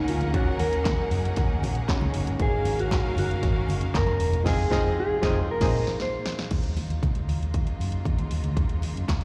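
A mellow, dark electric guitar carries the melody of this sultry, driving disco excerpt at 117 BPM in Eb dorian, joined from the start by a distant violin section, a barky, reedy electric piano with light overdrive and fast tremolo, and lush, close strings holding sustained chords in the background, the guitar, violins and electric piano all carrying slapback echo. A growly fingered electric bass, an up-front house drum kit with punchy kick and snare, bright hats, handclaps and crash, and very quiet, thick-skinned congas drive the groove, and the band accents together from 4.5 seconds while the drums fill toward 6.5 seconds. After that point the guitar, violins and electric piano have dropped out, leaving strings, bass, drums and congas on an Ebm9 chord, all heard as a live gig through a venue's PA with recital hall reverb.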